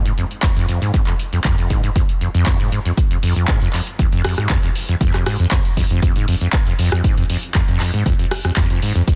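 A straight 4/4 groove at 118 BPM drives this raw, hypnotic acid house cut in F minor, with a punchy, tape-warm electronic kick sitting up front from 0.4 seconds and an analog drum machine adding handclaps, hi-hat and rim click. A squelchy, resonant sawtooth acid bass riff, fast in attack and decaying like a filter pluck, spans F2 to Ab2 from the very start, thickened with overdrive and a lush chorus. The short fragment sits in digital ambience under a dense, heavily limited modern master.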